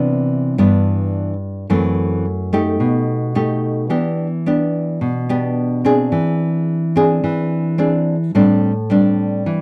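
Bossa nova with a sophisticated, breezy mood, moving at 108 BPM in a straight 4/4. A solo nylon-string guitar carries the whole passage, fingerpicked in a classical manner and placed up front, with its acoustic tone reaching from F#2 up to Ab4. Finger squeak on the strings adds an intimate, human detail to the playing. The harmony is rich and colorful, passing from Cmaj9 through F#m7b5, Baug7 and Em7 to Eaug7 before settling on Am11 at 8.4 seconds. The sound is dry and close, like a 1970s studio recording, touched by light reverb. This short fragment, cut from a longer piece, lasts about 9.6 seconds.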